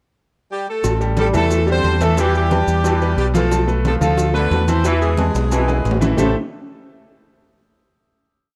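A straight 4/4 salsa groove at 180 BPM in A minor drives this short, danceable and passionate piece, with congas in slaps and open strokes, bongos in steady eighths with cowbell, ringing agogo bells and timbales, and grainy maracas under a punchy fingered electric bass tumbao that anticipates the chords, while a brilliant grand piano montuno in octaves and a background trombone section ostinato support a tight, up-front horn section playing hook phrases partly doubled in octaves from 0.5 seconds, all captured in a dry, close 1970s-style small-room sound before a drum fill from 5.2 seconds leads to the final chord at 6.2 seconds.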